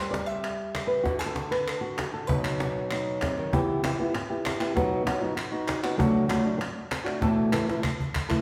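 Flamenco at 195 BPM in 4/4 with a dramatic, fiery mood, cut from a longer piece, where an up-front, thumb-plucked flamenco guitar carries the melody from A2 to E5 over chords moving from B to Em, D and Asus2, joined at 0.1 seconds by a woody cajon with faint snares and at 0.4 seconds by crisp, band-limited palmas hand claps, all set in a recital hall's wet reverb with a drum fill at 7.7 seconds.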